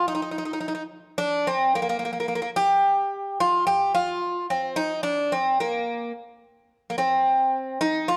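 This Turkish piece in makam ussak on C moves at a straight 109 BPM in 4/4, with a longing, soulful mood, and is an 8.2-second excerpt cut from a longer work. A solo acoustic Greek bouzouki carries the whole passage up front, its picked double strings giving a warm, metallic tone, with some strings doubled at the octave, in a range from Bb3 to G4 and tuned to A4 = 445 Hz. The dark, warm production places it in a moderate recital hall reverb with a 1.5-second decay.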